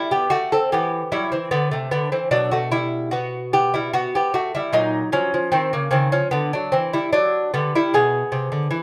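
A solo lute, bright and delicate on its gut double strings, some doubled at the octave, is fingerpicked up front in a baroque-style classical dance at 75 BPM in 4/4 with an introspective, solemn rubato feel, moving from Em/G through Bm, F#/A# and D13 to E7/B over this 8.8-second fragment cut from a longer piece, set in a moderately large studio reverb.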